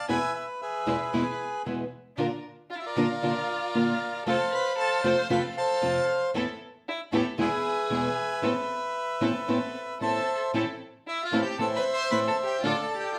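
Rubato 4/4 at 115 BPM, this melancholic, passionate tango in A minor, cut from a longer piece, puts a reedy, dark bandoneon melody up front beside a small, fingerpicked nylon-string guitar accompaniment, while one bowed violin with vibrato and portamento adds an expressive second line from 2.7 seconds and a pure, sul tasto string section floats soft stabs in the background, the band playing live in one room with wet reverb.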